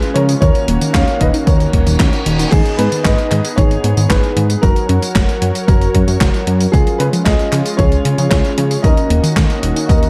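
Danceable and sunny, this italo disco passage moves at 114 BPM in a straight 4/4, set in F# major and cut from a longer piece. A boxy concert grand piano carries the melody with long sustain and tape echo, while a smooth analog pad, slow to bloom and softened by subtle chorus, holds sustained chords beneath it. A gated 80s digital drum machine of handclaps, hi-hat, tambourine, crash and a gated-reverb snare plays from the start, an overdriven, punchy electronic kick joins it at 0.4 seconds, and a thick, nasal, saturated analog bass sits prominently in the low end. Tucked in the background, a warbling, lo-fi pluck spins arpeggios through chorus and tape echo, and a brief reverse cymbal sweeps in at 1.7 seconds. The chords cycle from D#m7 through G#m, F# and C# before returning to D#m7, all framed by light digital ambience in a dark, warm production.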